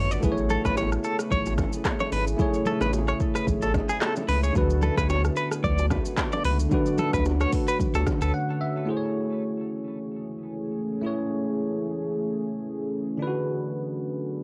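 A bell-like tine electric piano sits up front in this romantic, breezy afrobeats excerpt in A major at 111 BPM, its chorused chords moving between Amaj7 and D6 over a deep, dark pad. For the first 8.3 seconds a twangy, tremolo-tinged clean guitar riff, a round sine sub bass, an electronic afro-pop kit with handclaps, shaker and metallic hats, and background congas and bongos carry a swung groove. At 8.3 seconds they drop out for a break marked by an electric piano fill, after which the piano and pad carry on alone through a cassette-worn home recording with light reverb.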